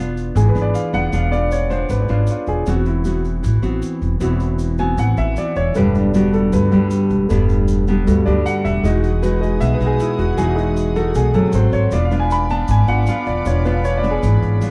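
Breezy and sophisticated, this bossa nova excerpt moves at 156 BPM in a straight 4/4, with a clear, smooth concert grand piano soloing up front over fingerpicked classical nylon-string guitar, a woody pizzicato upright bass and a grainy tube shaker, while a reedy, gut-string studio string section with light vibrato enters in the background at 8.8 s to hold sustained chords through harmonies such as E7b9b13 and Emaj9, all set in a small room with a dark, warm production.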